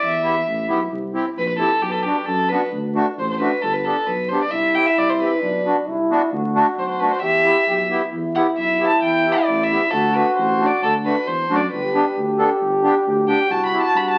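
A soft-attack, sul tasto violin opens this festive yet soulful klezmer piece in E minor at 133 BPM, floating up front over a dark, punchy tuba bass, with a reedy, close-miked accordion filling in the accompaniment from 0.2 seconds. A mellow, breathy trombone with light vibrato adds a whispered, jazz-tinged second line from 4.5 seconds, and the violin takes a pure, smooth solo from 8.1 seconds to the close. The whole cut carries the crackle of a very old 78 rpm record and sits in a large studio reverb.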